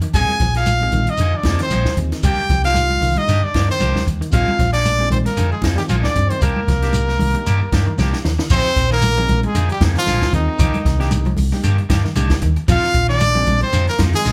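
Lightly reverberant and played live in one room, this driving, hypnotic afrobeat groove at 115 BPM in Bb mixolydian sets a clear, punchy, up-front trumpet melody over a smooth-topped trombone second line, a dark, round hollow-body bass, a dry cocktail drum kit with dark cymbals, a high-tuned snare and a drum fill at 8.0 seconds, grainy shekere and bright thin-skinned congas in the background, twangy slightly broken-up guitar arpeggios and picked stabs, and a reedy, worn, slightly out-of-tune electric piano, all circling Bb7sus4 and Cm9.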